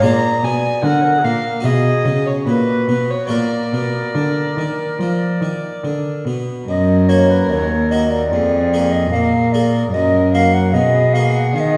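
In a steady, straight 4/4 at 74 BPM, this baroque-style sonata movement with continuo moves at a grave, solemn pace in E-flat minor, cut from a longer piece. A wooden flute carries the melody with an airy, crisp-edged straight tone that sounds expressive, while a single bowed violin traces a second line in a nasal, gut-string period voice that sits distant. Beneath them a plucked French-style harpsichord, brilliant with octave strings and placed up front, supplies the accompaniment, and a lone bowed cello anchors the bass with a reedy, smooth-topped gut-string sound, also close to the listener. All four parts play throughout, and the harmony passes through B-flat seventh and B chords before settling toward E-flat minor over G-flat after 6.7 seconds. A recital hall reverb with a 1.4-second decay places the ensemble further back in the room, lending the grave mood a spacious, resonant halo.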